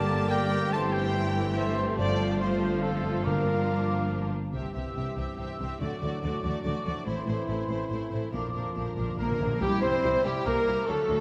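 Cinematic heroic adventure score at 142 BPM in 3/4, heroic and soaring, where a lush violin section carries the melody over airy flutes, clarinet, cor anglais, a softer second violin line, focused violas, dark horns, a tight, very quiet trombone section, clear trumpet stabs and woody cellos with double basses, while round, soft-mallet timpani drop out at 3.9 seconds and return for a fill at 8.3 seconds, all set in a wet concert hall reverb.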